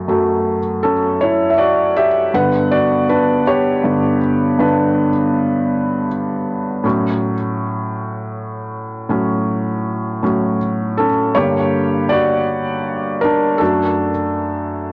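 This pop piece in a swaying 6/8 is carried entirely by a felt-muted upright piano playing solo from 0.0 to 14.9 seconds, with a heartfelt, intimate mood. The piano sounds soft and mellow, sitting up front with a thin felt layer that dulls its attack, and the mechanical action noise is clearly audible. A cassette tape character and an analog delay colour the instrument, while a moderate small-room reverb places it in a close, homely space. The harmony moves from F#m7 through G to A6, then shifts at 11.4 seconds into a new section built on Gm and D/F#. The piano spans a range from F#2 up to F#5, and the recording has the hushed, personal feel of a home cassette session cut from a longer piece.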